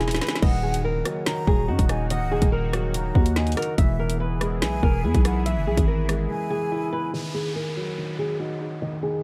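Cold and ominous, this half-time drill excerpt sets a fingerpicked flamenco guitar melody and a breathy, vibrato-laden concert flute line, both steeped in dub echo, over a dark, mellow grand piano accompaniment, a bright, detuned sawtooth pad in the background, a growling, buzzy 808 bass and an up-front electronic drum kit with a hard-clipped kick and woody snare, until the drums and bass fall away by 6.3 seconds and a downlifter enters at 7.1 seconds as a filter sweep begins.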